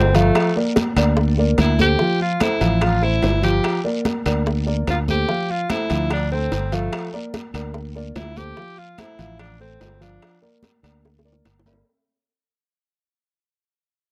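Driving and sultry, this Afro-Cuban jazz excerpt at 146 BPM in 4/4 puts a bright, vintage tenor saxophone with light vibrato and scooped notes up front alongside a punchy fingered electric bass, over a dark, worn baby grand piano with audible action noise, while ringing distant timbales and a raspy guiro join congas, tight high-tuned bongos and woody claves set in the background, all in a dry, close 1970s-style studio sound with light reverb that fades throughout as the saxophone stops at 10.4 s and a drum fill arrives at 11.0 s.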